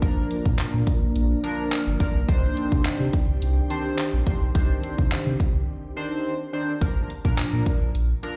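A straight 4/4 groove at 106 BPM drives this short, upbeat dance-pop piece in Bb major, cut from a longer track, with an electronic, layered pop drum kit of handclaps, hi-hat and a punchy kick sitting up front. Beneath it, a deep, full sub bass with an octave layer blends sine and triangle tones, its fast attack and sustained notes pumping against the kick. A chorused polysynth carries the accompaniment with a retro, glossy character built from pulse, sawtooth and square waves with pulse-width modulation, a sub octave, a filter sweep and a mellow phaser shimmer. Under it, a glassy, ethereal FM pad holds dark, full-bodied sustained chords with a slow attack, long release, ensemble chorus and its own reverb, until it stops at 6.8 s. The harmony moves from Bb to Cmadd9 at 2.3 s, then a break arrives at 5.7 s before Bb returns. The whole mix carries a carefree mood and a light digital ambience, heard as if played through a big sound system in a bare room with a large studio reverb and a softened top end.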